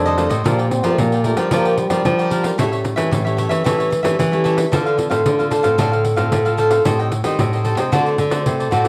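A straight 4/4 pulse at 112 BPM drives this lively, joyful samba and choro passage in Bb major, tuned to A4 = 437 Hz and cut from a longer piece. A jingly pandeiro played with hard hands sits close, while a bright, crisp picked cavaquinho and a fingerpicked nylon-string guitar with old strings and a woody, up-front classical tone fill out the accompaniment. A second nylon-string guitar carries the bass line, full-bodied and deep, with audible finger squeak. For the opening 2.8 seconds a growling trombone plays a raspy, breathy second line in jazz style, its scooped notes given a slapback echo. The harmony moves from Bb6 through A7 and Dm7 to Am7b5 and D7, heard in a lightly reverberant space.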